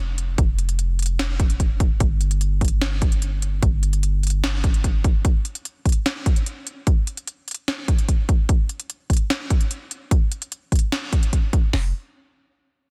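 Euphoric and lush, this short future bass passage, cut from a longer piece, moves at 148 BPM in 4/4 with a half-time feel. A deep, boomy 808-style bass with a sine core, a noise layer and a fast, decaying attack sits up front, its mellow low notes pumping under sidechain compression until 5.2 seconds and returning briefly near the close at 11.7 seconds. Two electronic trap drum kits carry the rhythm for most of the clip. The more prominent kit puts a hard-clipped kick, a sharp snare and crisp hats up front, while the second adds its own snare and hi-hats beneath it. The mix is dry, with little reverb, and the dense, heavily limited modern master gives the whole passage a tight, forceful sound.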